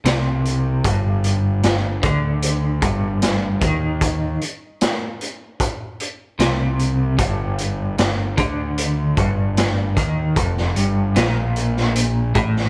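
At a steady 76 BPM in straight 4/4, a raw garage drum kit drives this dark, hypnotic psychedelic rock excerpt in G minor, its punchy kick, medium-tuned snare and hi-hat sitting up front with a gritty, saturated, mid-forward tone and a rolled-off top. A fuzz-laden picked electric bass enters at the very start, its overdriven, amped growl holding down the low end. From 0.1 seconds a clean electric guitar plays the riff, double-tracked and compressed, its picked notes shimmering through a tremolo effect close to the listener. The whole 12.7-second passage rests on a single G minor chord, letting the repetition build a trance-like pull. A small room ambience surrounds the parts, giving the recording a close, rough-edged garage feel.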